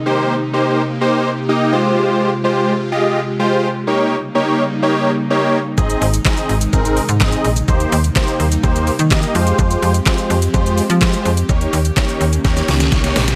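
A big, bright polysynth accompanies this dance-pop excerpt, its fat, nasal detuned-sawtooth chords sitting up front with a moving notch and a pumping sidechain from the first moments. Beneath it, an airy, breathy pad with a soft, warbling vintage character holds sustained chords, thickened by chorus and pumping along. At 5.8 seconds a snappy FM bass with a metallic attack arrives together with a smooth R&B drum kit of knocking kick, deep snare, handclaps, shaker and hi-hat, giving the straight 126 BPM groove in 4/4 its drive. The harmony moves through Eb6, Fmadd9, Eb7 and Ab, lending a bittersweet yet energetic mood, and a drum fill at 12.4 seconds carries the cut onward. Light reverb gives the produced, electronic sound a touch of space.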